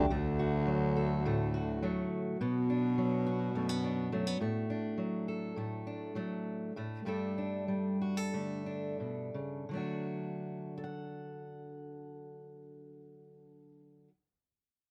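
Folk excerpt in D major with an uplifting, nostalgic mood, moving at 83-105 BPM in a straight 4/4 and slowing down from 4.7 to 9.7 seconds as the chords pass from D through Bm and D/A to Gsus2, returning to D at 9.7 seconds. A dark baritone saxophone carries the bass line up front for its first 4.4 seconds, with a soft attack, light vibrato and a smooth, classical top. A fingerpicked steel-string acoustic guitar of shadowy tone plays throughout with audible finger squeak, all set in light reverb within a rough home demo mix.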